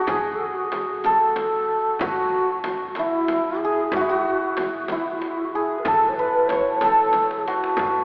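A shimmering, ringing santur carries the melody up front from the very start, alongside a breathy low ney with vibrato on a softer second line. This hypnotic, longing passage of Persian modal music, cut from a longer piece, moves in 6/8 at 62 BPM in A dastgah mahur. A deep frame drum and a tight tombak, both played with hard hands, sit low beneath them, and a drum fill arrives at 7.1 seconds, all within a long church reverb and a thin AM radio sound.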